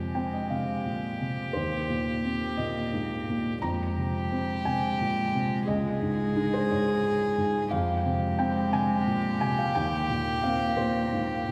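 In a rubato 6/8 lilt, this longing, reflective neoclassical piece pairs a felt-muted upright piano, dark and mellow with audible action noise, under a rich, floating sul tasto violin melody and an intimate, airy-bowed cello second line with light vibrato, all set back in a wet concert hall and cut from a longer piece.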